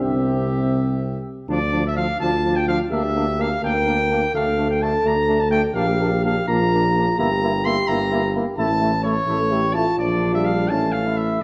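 Classical brass quintet in D minor, stately and triumphant, moving in a rubato 6/8 at 84 BPM, where a clear, distant trumpet carries the high melody up front, a warm flugelhorn sings a second line in the background, a clear, close-miked trombone and a mellow French horn fill out the accompaniment, and a mellow tuba with light vibrato anchors the bass, all within a roomy recital-hall reverb and a dark production, as the harmony travels from C through Dm, Gm/D and Edim/G to close on A in this brief cut from a longer work.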